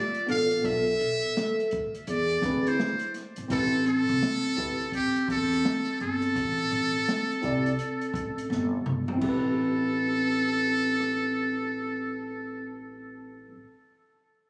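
A buzzy, metal-muted trumpet carries a smoky, mellow jazz-hop melody from the opening, shadowed by a ringing vibraphone played with soft mallets and slow motor vibrato, while a worn, slightly out-of-tune, lightly overdriven tine electric piano, a woody pizzicato upright bass and a dark, boomy acoustic drum kit with a fill at 8.5 seconds settle into a lazy swing, all captured on a phone in a small club room with light reverb.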